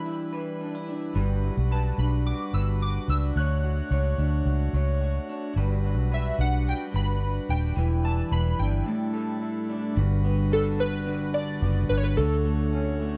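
A straight 4/4 pulse drives this sunny, hazy indie pop passage, cut from a longer piece, with a punchy, foam-muted vintage electric bass sitting up front from 1.2 s. Round, detuned analog keys with a fast attack, wave-folding and a filter sweep carry the melody through analog chorus and slapback echo. A bright, twangy, slightly broken-up electric guitar through a small old amp accompanies with subtle chorus and a warbly pitch drift, a nasal pipe organ cornet stop with baroque voicing and chiff holds chords quietly beneath, and a brief break at 8.9 s opens onto a new section at 10.0 s, captured in a dry, close 1970s-style studio sound with digital ambience.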